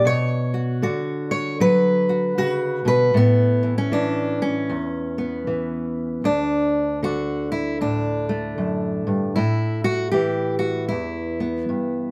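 A gently swung 4/4 pulse at 77 BPM carries this hopeful, nostalgic folk excerpt in D major, where a lone fingerpicked steel-string acoustic guitar with a dark, auditorium-sized tone sits up front in light reverb, ranging from D2 to C#5 as it moves through Bm and Aadd9 before arriving on D at 6.2 seconds and Asus2 at 9.3 seconds, in a live, in-the-room sound that runs to 12.1 seconds.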